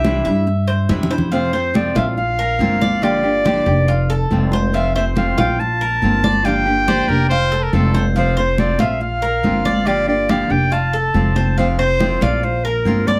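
A clear clarinet carries the melody up front in a classical style, singing over a sunny Cuban son and guajira groove in straight 4/4. Beneath it, a full-bodied nylon-string guitar fingerpicks the accompaniment, while a Cuban tres adds picked arpeggios with a metallic shimmer from its double strings. A woody upright bass plays pizzicato, sitting prominently in the mix, and high-tuned congas with a thick skin keep the percussion going, with a short fill arriving at 0.9 seconds. Between 6.9 and 8.1 seconds, a punchy, forceful trumpet briefly adds a second line with vibrato and a smooth top. The harmony moves gently through F, Bbadd9 and Gm7, and a small room reverb gives this warm passage, taken from a longer piece, an intimate, live feel.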